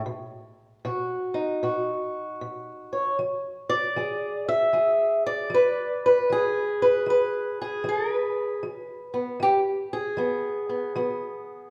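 Recorded in a church or concert hall, this short excerpt is bathed in a wet recital hall reverb with a 1.6 second decay, yet the lone guitar still sits up front. It is acoustic country blues in E mixolydian, moving at 77 BPM in 4/4 with a swung eighth-note feel. The only instrument is a fingerpicked acoustic guitar played in a swing style, its tone dark and boxy, ranging from B2 up to E5. The harmony rests on B at the start before settling onto E at 3.2 seconds, where the opening phrase repeats. The mood is gritty and swaggering, a solo performance that ends at 11.7 seconds, clipped from a longer piece.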